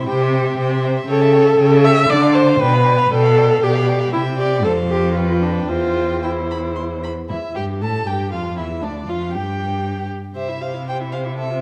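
The viola sits close and up front, its bowed accompaniment full of vibrato, soft attacks and expressive portamento gliding between notes. Beneath it, the cello carries the bass with a rich, similarly expressive tone and gentle slides. The first violin sings the melody high above in a dark, woody voice with vibrato, while the second violin spins a smooth, even inner line that sounds more distant. This cheerful, lively fragment of a classical-period string quartet movement moves briskly in three, and its opening material returns at 7.3 seconds. The players are bathed in a glowing recital-hall reverb, and the overall production leans dusky and mellow.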